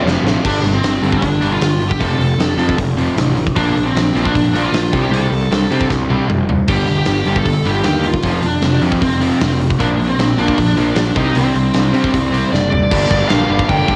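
Punk rock with an urgent, raw edge, driven by a punchy, up-front acoustic drum kit that opens with a fill and a dark, high-gain lead guitar carrying the melody through distortion, analog delay and cassette tape grit. Behind it, a bright cranked stack guitar and a crunchy overdriven guitar pick out riffs in the background, while a growly fuzz bass adds overdriven low end. The chords cycle through G5, F, B-flat and C5 before settling on G minor at 12.9 seconds, all captured as a dry home recording on cassette and cut from a longer piece.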